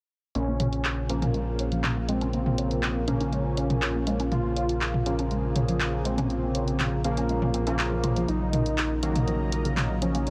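A straight deep house kit with handclaps and low-passed hi-hats and toms drives this dark, dramatic melodic techno excerpt, where a gritty, saturated synth bass sits up front beneath a thick, warbling unison lead with vintage sampler grit and tape echo, a bright, evolving resonant pad, a woody wave-folded pluck arpeggio in the background, edgy sync-sweep polysynth stabs entering at 1.1 seconds, and a barely audible overtone-sweeping drone joining at 1.6 seconds, all over a Bbm chord that shifts to Gb6/Bb at 8.3 seconds.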